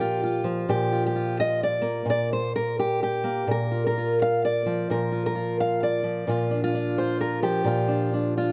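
Lightly reverberant and up front, this haunting, melancholic 8.5-second folk fragment in a rubato 3/4 at 130 BPM features a solo fingerpicked steel-string acoustic guitar with a warm auditorium-body tone, ranging from Bb2 to F5 as it moves from Bb through Gm7/Bb and back to Bb at 3.5 seconds.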